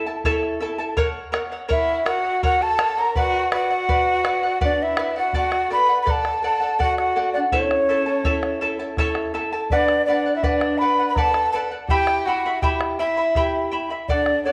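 Andean folk in a wistful, melancholic 3/4, cut from a longer piece, opens with a bright, shimmering fingerpicked charango over a round, close bombo, and at 1.7 seconds a breathy large quena with chiff and vibrato takes the melody up front while a dark, woody bowed violin carries a second line beneath, set in a wet echo-chamber reverb.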